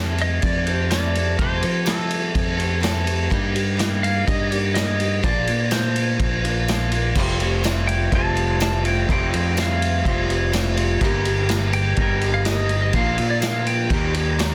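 A straight 4/4 beat at 125 BPM drives this folk rock and heartland rock passage in F mixolydian, cut from a longer piece, with a jangly, nostalgic mood. A vintage drum kit sits up front with a punchy kick, a medium-tuned snare and dark crash and ride cymbals, its roomy, distant sound rolled off at the top. A round, direct fingered electric bass anchors the low end, and a boxy parlour steel-string acoustic guitar is picked underneath with audible finger squeak, while a close, jingly tambourine enters in the background at 0.9 seconds. The pedal steel guitar carries the melody in a clean, compressed, twangy tone, played with fingerpicks and slide and shaped by volume swells. At 7.2 seconds an electric guitar through a small old amp adds a slightly broken-up, lo-fi riff treated with spring reverb. The chords cycle from Fadd9 through Eb/G to Bb, and the dry room sound meets a dense, heavily limited modern master.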